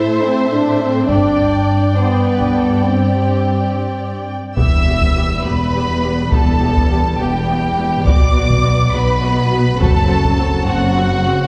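Epic orchestral film score in 6/8 at 69 BPM, heroic and dark, settling into E minor from 4.6 s as the harmony moves from Am and Gsus4 through Em, Bm and F#dim in this short cut from a longer piece. Lush violins carry a focused, vibrato-rich melody high above a smooth second violin line, with violas sitting in the background, distant French horns holding clear sustained chords, and dark cellos anchoring the bass. Double basses add a brief touch at 1.1 s before returning from 4.6 s, while a heavy-sticked, saturated taiko ensemble pounds from 1.1 s to 10.8 s, all set back in a wet scoring-stage reverb.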